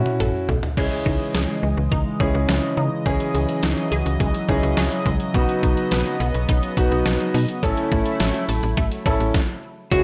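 A dry, gritty hardware recording with transformer saturation and light reverb frames this nocturnal, driving synth-pop excerpt in C# minor at 105 BPM in a straight 4/4. A detuned 8-bit drum machine sits up front with a thumpy kick, a medium-tuned snare, hi-hat, toms and crash, its sampler-style hits sounding tape-warm and re-recorded in a large room, and it opens on a drum fill. Beneath it, a slap-like FM bass with tube saturation gives snappy, metallic attacks that decay mellow, while a clear grand piano plays intimate accompaniment with audible action noise and long sustain. A resonant blip pluck, juicy and squelchy with a moving notch, phaser and analog delay, runs arpeggios in the background, and a shimmering, retro pulse-width pad with chorus holds chords from 0.8 s, moving through C#madd9, Badd9 and A6. The band hits a stop at 9.3 s, and a dark, clean, picked electric guitar lands a single up-front note at 9.9 s just as the excerpt is cut off.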